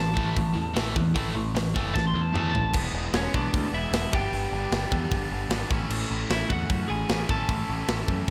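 A lightly driven lead guitar leads the way, its twangy, slightly broken-up tone carrying a solo across the opening 2.7 seconds before continuing the melody to the end of this short punk rock excerpt. Set in A major at 152 BPM in a straight 4/4, the track feels rebellious and energetic, with an overdriven electric guitar holding down the riff throughout and a tight, distorted second guitar adding a riff only until 2.7 seconds. Underneath, a growling picked bass pushes a punchy, overdriven low end. A tight metal drum kit enters at 0.2 seconds, sitting up front with a rolled-off top and a firm kick, and throws a fill just before the shift to the second section, where the harmony moves through E, G and back to A. A moderate scoring-stage reverb blended with a small room gives the mix a big arena sound.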